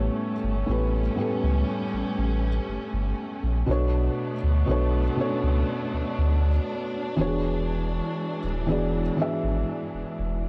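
The slow, straight 4/4 pulse sets a moody, longing R&B mood in this short passage cut from a longer piece. A felt-muted upright piano carries the accompaniment up front, its thick felt giving a soft, dark, intimate tone with audible action noise. A deep, round sub bass with a sine-like body, fast attack and long sustain sits close beneath it. A studio string section holds sustained bowed chords, its ensemble sound smooth on top and expressive with vibrato and portamento. The harmony moves from A7 to Bm9 at 3.7 seconds and to E13 at 7.2 seconds. A small room ambience and a dry, gritty cassette-tape character colour the whole recording.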